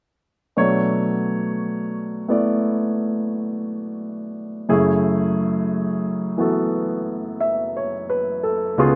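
A slow 59 BPM swing in 4/4 carries this smoky, melancholic jazz excerpt in F# minor, where a warm, natural baby grand piano sits up front under light reverb and close, detailed microphones, accompanying from C#2 to E5 as the harmony moves from Bm9 to F#m9 at 4.7 seconds.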